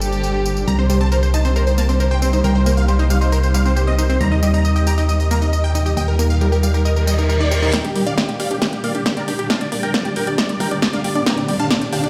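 Uplifting trance with a driving, emotional pull, this short cut from a longer piece moves in a straight 4/4 over minor-key chords. A shimmering, ethereal pad holds sustained chords throughout with chorus and its own reverb, pumping against the sidechain, while a round, mellow FM bass sits up front until 7.7 seconds. A rich violin section offers a brief second line in the background at the very start, and from 0.7 seconds a detuned, punchy supersaw stab carries the melody through phaser and digital delay alongside bright, cassette-tinged analog pluck arpeggios. The dance kit's punchy snare, metallic hats and tambourine run throughout, and a reverse cymbal leads into a build-up at 7.7 seconds, where a very quiet layered kick joins, a drum fill rolls and a filter sweeps across the pluck as a riser climbs. The whole mix carries light stone-room reverb, as if played on a big sound system in a bare room.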